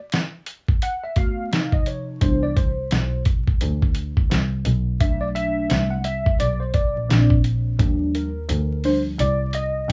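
A muffled, sampler-style drum kit opens this cool, smooth jazz-hop excerpt at 86 BPM, its thumpy kick, fat snare and hi-hat swinging under vinyl crackle, before a worn, slightly out-of-tune tine electric piano enters at 0.8 seconds with analog chorus and light overdrive to carry a solo over chords such as Cmaj7, Bm7 and Bb9. A bowed double bass, boxy and even with gentle vibrato, joins at 2.2 seconds, and a drum fill closes out the final two seconds. The sound is dry and close, with drums, bass and piano all sitting up front.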